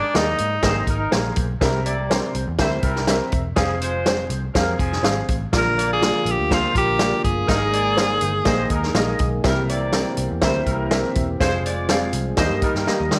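Uptempo 1960s-style soul with a warm, uplifting mood, cut from a longer piece, where a bright, punchy tenor saxophone sings the melody up front with vibrato, heard briefly at the start and again from 5.6 to 9.2 seconds, over a tight horn section playing a second line. A clear, woody upright piano that sounds slightly detuned and worn carries the accompaniment alongside a dark, round foam-muted electric bass and a vintage drum kit with a tight kick, a medium-tuned snare and hi-hat placed up front. A tonewheel organ on a slow rotary speaker joins at 5.5 seconds with sustained chords in the background, a drum fill closes at 12.9 seconds, and light studio reverb gives the whole band a natural room feel.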